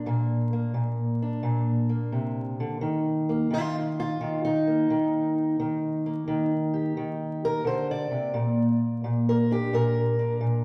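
Vinyl crackle and a wet hall reverb give this short excerpt the feel of an old recording made in a church or concert hall. A single fingerpicked steel-string parlour guitar sits up front with a dark, boxy tone, playing swaggering, rollicking acoustic country blues at 87 BPM with a swung 4/4 feel in Bb major. The harmony moves from Bb to Eb at 2.8 seconds and back to Bb at 8.3 seconds.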